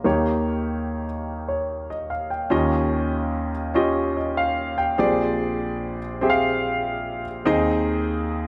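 Gospel piano excerpt in a slow 6/8 at 49 BPM counted in dotted quarters, carrying a jubilant yet reverent mood. A single concert grand plays alone throughout the 8.5 seconds, reaching from deep Bb1 in the bass up to G5, with a warm, intimate, natural tone up front and the mechanical sound of its action clearly audible. The harmony moves from Eb7 to Eb9 at 2.5 seconds, then to Bb13 at 5.0 seconds, settling on Ab over an Eb bass at 7.5 seconds. A moderate large-studio reverb gives the close, warm sound a sense of space. The passage is cut from a longer performance.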